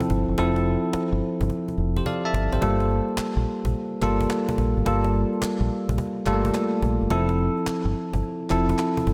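New jack swing R&B at 107 BPM with a swung sixteenth feel in G dorian, bouncy and confident, cut from a longer piece. A bright, bell-like tine electric piano carries the chords up front through lush chorus and slapback echo, moving from Fmaj7 to Gm9 at 2.6 seconds after brief fills from both the piano and the woody, hard-handed cajon, which has its own slapback, while a round, punchy deep dub fingered electric bass holds the low end. From 3.2 seconds a hollow group handclap sits in the background, and a moderate hall reverb gives the mix a big arena sound.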